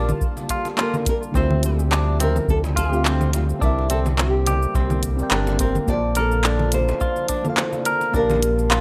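A short excerpt of wistful sunset chillout in D minor at 106 BPM, with a gentle 16th-note swing. It opens with a dark, full-bodied nylon-string guitar carrying the melody through a touch of delay, its fingerpicked notes showing a finger squeak. Around it sit a mellow FM electric piano, soft and round with chorus and phaser, a thick, detuned unison pad held very low in the mix, and a bright, twangy clean electric guitar picking arpeggios through digital delay. A round, sawtooth-edged analog bass sits up front beneath them. A smooth R&B kit with tape-warm hi-hat, cabasa, congas and handclaps comes in at 0.1 seconds, an overdriven electronic kick joins at 0.2 seconds, and faint, distant congas ring out from 0.4 seconds. The chords drift from Gm9/Bb through Dm11, C9 and Bbmaj7 before returning to Gm9/Bb, all in light reverb and digital ambience with the rough feel of a home demo mix.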